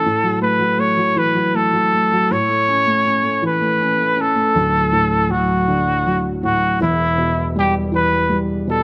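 A warm, vintage-toned trumpet carries the melody up front, singing with vibrato and scooped notes in a jazz-inflected solo voice over a swaying six-eight pop ballad. Beneath it, a felt-muted upright piano supplies soft, mellow accompaniment, its thick felt giving an intimate, close-up sound, while chords move from F#m7/A and A into D at 4.6 seconds and Em at 6.8 seconds. Light reverb surrounds this tender excerpt, which is cut from a longer piece.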